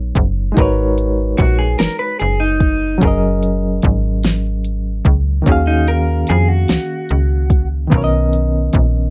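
A slow six-eight groove at 49 BPM is set by a produced electronic drum kit with a soft kick, fat snare and dark hi-hats, sitting up front alongside a snappy, metallic FM bass whose fast attack decays. This tender, warm R&B piece in F# major drifts through Bmaj7, G#m11, F#69 and D#m11 on a reedy, worn electric piano, slightly out of tune and treated with tremolo. From 1.4 s to 7.7 s a dark, compressed electric guitar adds a picked second line, just breaking up, in a dry, close mix.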